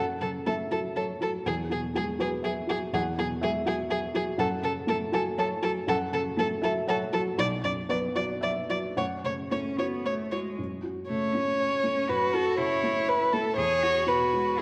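Neoclassical piano and strings in 3/4, played with a rubato feel, this short passage cut from a longer piece carries a melancholic, longing mood. A rich, expressive solo violin carries the melody up front, bowed with vibrato and portamento. Beneath it a single cello plays a second line with a clear, smooth and even tone and light vibrato. A felt-muted upright piano supplies the accompaniment, its thick felt giving a soft, dark, intimate sound with short sustain and audible action noise close to the listener. All three parts play throughout, set in a wet echo chamber reverb, as the harmony moves between F#m, Eadd9 and Bm and a new section begins at 10.6 seconds.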